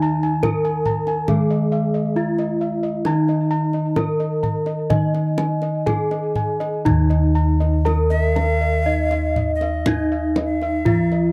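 Shimmering and serene, this slow Javanese gamelan passage in 4/4 at 60-72 BPM, cut from a longer piece, sets a ringing, wooden-mallet bronze metallophone melody with paired-tuning beats over a mellow, padded-mallet metallophone accompaniment, round and dark bossed-gong arpeggios touched with tape echo, a mid-forward bossed-gong bass with transformer saturation, and deep, compressed kendang struck with hard hands, before a pure, vibrato-laden bamboo bansuri enters at 8.1 s as a second line, all captured in a dry, close 1970s-style studio sound with light reverb.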